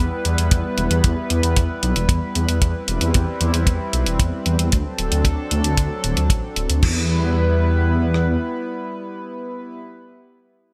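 A bright, 1980s-style digital production with light reverb and a studio ambience frames this nostalgic, driving synthwave passage cut from a longer piece. A shimmering, chorused pulse-width pad holds sustained chords through Em, Cmaj7/E and D7 with sidechain pumping, while a deep, rumbling detuned saw bass with tube saturation sits up front until 8.4 seconds. Alongside, a dry, tight-kicked 70s drum kit supplies kick drum and rim click, and a gated, tape-tinged 80s digital drum machine adds crash cymbal and hi-hat until 6.9 seconds, just as the harmony returns to Em at 6.8 seconds.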